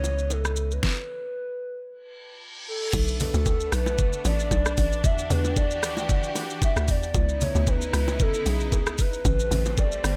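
A woody, clarinet-like synth lead with chorus, delay and a low-pass filter carries the melody through this deep, hypnotic amapiano excerpt at 114 BPM with swung 16ths, over lush bowed strings moving from C#m9 to Am9, a knocking, up-front electronic drum kit with metallic hats and shaker, ringing bongos and congas in the background, and a brief opening of very quiet grand piano and round sub bass that stops at 0.8 s, before an electronic reverse cymbal leads into a bouncy, hollow log drum bass at 2.9 s.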